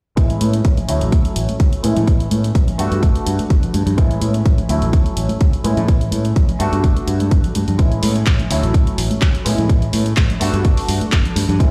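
Joyful and feel-good, this filtered disco house passage runs from 0.2 to 11.7 seconds on a looping Amaj7, Dmaj9, Amaj7, Gmaj7 progression, with a filter sweep spanning its whole length. A present, polished grand piano supplies the chordal accompaniment through a phaser, pumping and low-pass filter, while a bright, direct fingered electric bass pumps beneath it, also low-pass filtered. A layered, tape-warm electronic kick sits up front, with analog drum-machine handclaps and pumping hi-hats, and soft-handed vintage shaker and congas filtered into the background, all heard as if through a big sound system in a bare stone room.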